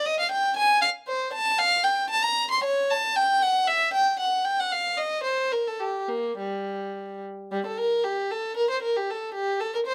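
A lone bowed violin opens this flowing, introspective baroque-style suite movement in G minor, moving in a rubato 3/4 at roughly 102-120 BPM and ranging from G3 to C6. The period-style playing has a reedy, gut-string tone with light vibrato, sitting up front in a touch of reverb. A new section begins at 7.5 s before the fragment breaks off at 9.9 s.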